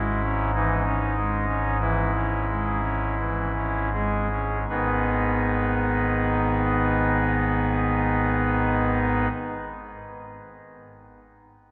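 Rubato in a slow 4/4 that slows further through the first 4.7 seconds, this dark, solemn classical chorale fragment features a solo pipe organ on a soft, reedy oboe stop with romantic voicing, sitting up front and ranging from deep bass notes to the middle register until 9.3 seconds, all bathed in a long, cavernous cathedral reverb.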